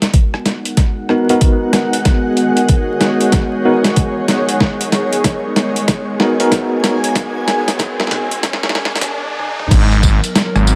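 An overdriven, knocking electronic kick sits up front through this swaggering glitch hop excerpt at 94 BPM, its swung 16ths giving the groove a playful strut in G# minor. Beside it, a gritty, pitched-down boom bap sampler kit with a medium-tuned snare, rim clicks, hi-hat, tambourine, toms and crash cymbal fills out a long build-up, while a warbling, nostalgic square-and-triangle pad holds a mellow G#m9 chord with chorus and sidechain pumping. A bright, cloudy granular pad drifts above, a worn, slightly out-of-tune tine electric piano adds tremolo-laden stabs through tape echo, and a background riser builds as filter sweeps move across the pads and piano. After a stop at 9.1 seconds, the drop hits at 9.7 seconds with a thick, swirling, detuned saw bass on G#1 with phaser. Light reverb and vinyl crackle frame the whole scene.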